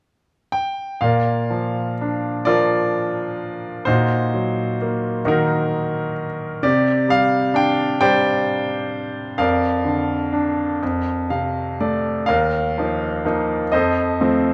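Dark, warm production with moderate recital-hall reverb frames this calm fragment of lyrical classical solo piano in Bb major: a bright, intimate grand placed up front, with audible action noise and long sustain, unfolds in a slow 6/8 at 43 BPM with uneven, rubato timing from 0.5 s, colours its progression with a shaded Ebm/Bb chord, adds a brief fill at 10.8 s, and settles on Ebsus2 and F.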